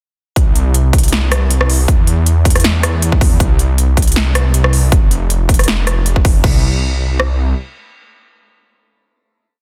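A short, playful and bright future bass piece opens at 0.4 s straight into a half-time drop at 158 BPM with a light swing: a punchy kick and rim click sit up front, while a second drum layer adds a punchy snare, crisp closed and open hi-hats with rolls, and crash cymbal, both kit layers sounding tape-warm and re-recorded in a large room. Underneath, a thick, lush detuned sawtooth bass with a sine body, fast attack and chorus sustains low notes, pumping under the sidechain and following the chord rhythm. The drop gives way at 6.4 s to a final note that carries the piece to 9.5 s, all within a dense, heavily limited modern master with very little reverb.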